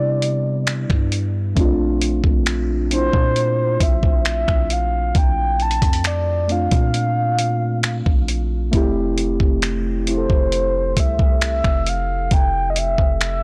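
A blown-out, overdriven recording with little reverb carries this tender, smooth contemporary R&B fragment at 67 BPM in 4/4. Over Cmaj9, Bbmaj9 and Fmaj9 chords, a round, horn-like synth lead with chorus, vibrato and digital delay sings the melody up front. Beneath it sit muted, felt-like synth keys, a deep, sine-toned 808-style bass and a gritty, compressed sampler-style drum kit that enters at 0.2 seconds with finger snaps, hi-hat and a thumpy kick.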